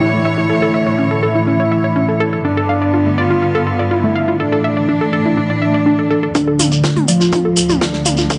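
Melodic techno at 123 BPM in D harmonic minor, cinematic and driving, where a smooth, airy supersaw melody, lush bowed strings and a warbly, dusty plucked arpeggio with a filter sweep pump together over a very quiet swarming drone through an A, G and Asus4 progression, until at 6.3 seconds the harmony moves to D minor and a build-up begins with a dreamy chorused lead, a heavy tape-tinged kick and a soul kit's snare and hats, joined moments later by a grainy shekere and then a house kit's metallic hats and toms, all in a dark production with a lush hall reverb.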